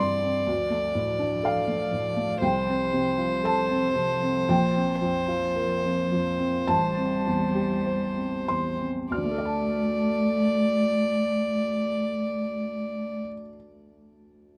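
Rubato 4/4 at 47-63 BPM, slowing down over the first 9.1 seconds, carries this fragile, reflective neoclassical fragment in D minor: a floating, sul tasto violin melody sits up front above a dark, woody cello line with vibrato, both ending at 13.2 s, while a felt-muted upright piano, mellow and intimate with audible action noise, plays accompaniment through to 14.6 s in light reverb, moving from Dm through F/C, Bbsus2 and Am7 back to Dm.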